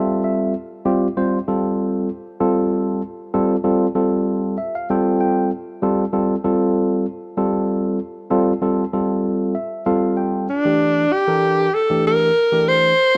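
Funky and driving, this jazz passage, cut from a longer piece, moves in a lightly swung 4/4 over a dry, close studio sound in a 1970s style, with light reverb and a touch of room ambience. A tine electric piano carries the accompaniment throughout, its clean, direct tone placed up front and softened by a subtle chorus. It opens on a G9sus4 voicing and drops in short fills along the way, ranging from its low register up into its bright upper notes. At 10.5 seconds the music shifts to a new section on a Gm69 chord, and a clear alto saxophone enters as the up-front solo voice. The horn plays in a jazz style with vibrato and a breathy subtone, and a slapback echo trails its line until the passage cuts off at 13.2 seconds.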